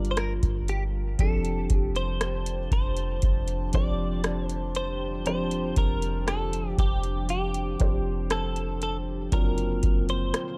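A dark, warm digital ambience wraps this short cut from a longer contemporary R&B piece, a dreamy and tender passage at a slow 59 BPM in 4/4 with a straight feel in F major. Up front, a booming analog drum machine sets the pulse with a deep kick, metallic hi-hats and rim clicks, its electronic tone re-recorded in a small room, while a clean 808-style bass, sine-like and boomy with a fast attack and decaying tail, sits low between F1 and G1 until 10.3 s. A felt-muted upright piano supplies soft, intimate accompaniment, and a chorused pulse-width pad holds shimmering, retro sustained chords with a soft attack and long release. Over them, a direct-recorded clean electric guitar carries the melody between G4 and D5, its bright, twangy picked tone compressed and colored by analog chorus. The harmony opens on Gm7, settles onto F69 at 1.2 s for most of the passage, and turns to D7alt/F# at 9.3 s.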